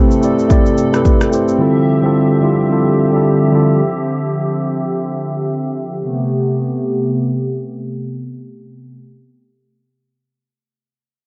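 Swung sixteenths at 109 BPM set up this deep, late-night amapiano excerpt in A minor, with a punchy, layered deep house kit of kick, rim click and shaker up front until it drops out at 1.6 s. A mellow, clean tine electric piano accompanies over Am9 and Dm11 until 3.8 s, while a hollow, flute-like detuned pad with soft attack, chorus and sidechain pumping sustains chords to the end, and a filter sweep runs through the first six seconds. Moderate plate reverb and a dark production give the music a nocturnal depth.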